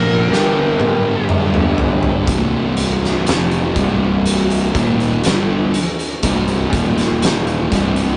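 This brooding, hypnotic stoner and doom metal fragment opens on a dark, distorted fuzz lead guitar with wah up front. Beneath it, a bright, double-tracked fuzz guitar riff, two thick fuzz guitars (one dark, one warm) and a growly, punchy fingered bass with overdrive sit in the background. At 0.3 seconds an oversized, low-tuned acoustic drum kit enters with a fill, its fat snare and boomy kick saturated and gritty in a pumping big room; the lead stops by 1.3 seconds and the bright guitar by 2.3, as the chords move from Gm to Cm and on to Eb5, all in a rough rehearsal-room sound with tube saturation, light reverb and a muffled top end.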